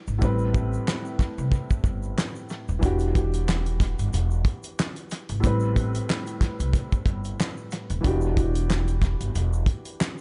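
A worn, boxy baby grand piano with audible action noise opens this dark, moody boom-bap hip-hop excerpt through cassette-tape filtering and tape echo, joined at 0.1 seconds by a woody, pizzicato upright bass up front and a grainy tube shaker sitting in the background, while a cloth-damped, thuddy kit of fat snare, tight kick, hi-hat and handclaps enters gritty and saturated with its own tape echo, all swaying on a light swing over alternating Am9 and Em9 chords in an echo-heavy small-room mix with a dulled top end.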